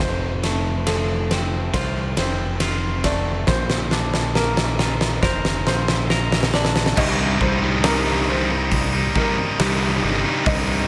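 A huge, up-front arena drum kit with a fat snare and punchy kick drives this cinematic, melancholic post-rock excerpt at 69 BPM in C dorian, playing a build-up and drum fill over F and Bb. A soft, boxy felt-muted upright piano with audible action noise sits in the background, and a scooped, twangy clean guitar shares its arpeggios and slapback echo until 7.0 s, all over a growling, overdriven fingered bass. At 7.0 s the harmony lands on C minor as a fuzz guitar and a tight, bright distorted guitar enter with a picked riff, all within a light, small-room reverb.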